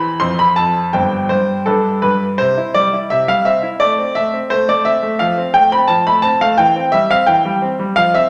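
A playful, graceful classical-period piano sonatina in 2/4, taken with a flexible rubato, heard here as a short cut from a longer piece. A clear baby grand piano plays alone from the start to 8.3 seconds, its natural, up-front tone and short sustain ranging from deep bass notes to bright upper ones. The wet reverb of a recital hall surrounds the instrument, and a new section begins at 2.4 seconds as the harmony moves through C, A minor and F.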